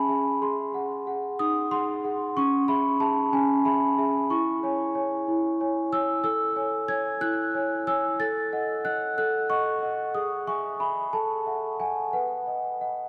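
A vast, echoing cathedral reverb with a 5.5-second decay surrounds this short excerpt, a dreamy, innocent classical lullaby in C# minor, moving gently in 6/8 at 62 BPM to the dotted quarter. A large celesta plays solo and up front throughout the 13.1 seconds, its bell-like, sweet tone struck with hard felt hammers, ringing and dark, ranging from C#4 to A6. The harmony opens on G#7, settles into C# minor, passes through Amaj7 and F#m6/A, and closes on a B chord.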